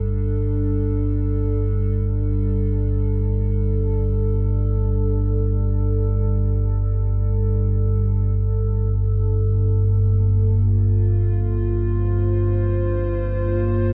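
Unfolding in free time, this dark ambient drone feels desolate and cavernous, a fragment cut from a longer piece. A deep, ominous rumbling drone sits up front from 0.0 to 13.9 seconds, its detuned sawtooth and triangle tones roughened by ring modulation, a nasal edge and its own built-in reverb. Beneath it in the mix, a moody analog pad holds sustained chords across the same span, fading in over the full 13.9 seconds. The pad blends square, sawtooth and triangle waves with a sub octave, a moving notch and chorus for a shadowy, shifting colour. The harmony rests on a bare G5 before turning to Bbadd9/G at 8.0 seconds. Light reverb surrounds the sound, and worn cassette tape gives it a warbly pitch drift.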